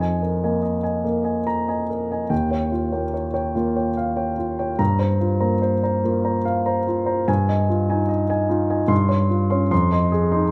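An intimate, up-front concert grand piano opens alone on Fm7 and drifts through rich extended chords such as Eb9 and Dbmaj7#11/G before settling back on Fm7 at 9.7 seconds, a hazy, nocturnal fragment of impressionist classical solo piano in F minor, in a rubato 3/4 around 73 BPM, its deep bass and long sustain blooming into a moderate recital-hall reverb while audible action noise keeps the sound close and natural.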